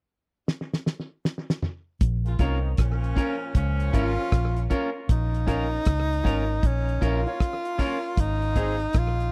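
A dry, close 1970s-style studio sound frames this laid-back, meditative roots reggae excerpt in Bb minor at 78 BPM, swung on the sixteenths, which opens with a drum fill from a damped kit whose fat snare and tight kick sit up front with slapback echo. From 2.0 seconds a round, punchy, foam-muted fingered bass settles on Bb minor, joined by a twangy clean guitar with spring reverb and tape echo, stabs from a brilliant grand piano in the background, and a short horn-section line with light vibrato and tape echo. At 3.9 seconds a clear tenor saxophone takes the melody up front with vibrato and tape echo, and the harmony moves to Ab at 8.2 seconds.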